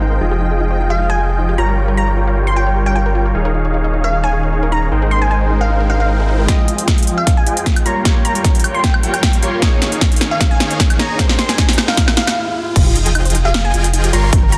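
A dense, heavily limited modern sound with light reverb carries this bittersweet, lush future bass passage in F minor, cut from a longer piece, moving at 153 BPM with a half-time feel. A very quiet, shimmering ambient pad holds ethereal sustained chords beneath huge, detuned supersaw chords that drive the riff throughout, pumping with sidechain and filtered through a low-pass. A thick, saturated sub bass sits up front alongside a soft, round pluck tucked in the background with arpeggios, while a crystalline wavetable pluck carries the melody from 0.9 seconds with chorus and dub echo. At 6.5 seconds the build-up begins: glassy, airy digital keys enter in the background, and a punchy electronic kick and a big-room dance kit with crisp hats, snare, crash and woodblock arrive tape-warm and up front, as a filter sweep moves across the supersaw chords. After a brief stop, the drop lands at 12.8 seconds with the sub bass and soft pluck returning, while a very quiet riser and sub drop, sounding since 4.9 seconds, marks the impact, all over a progression that cycles from Fm9 through Gm7b5, Eb7sus4 and Abmaj9.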